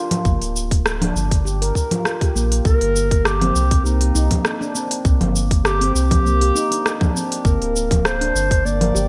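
A dark, distant clarinet enters at 2.7 s with a solo classical-style melody trailed by digital delay, floating over ringing, mellow handpan arpeggios touched with delay, a round sine sub bass, a tight, up-front electronic kick and an organic electronic kit of cabasa, congas, crisp hi-hat and rim click, forming a mystical, warm, lightly swung organic downtempo groove set in lush hall reverb with bright 1980s-style digital production.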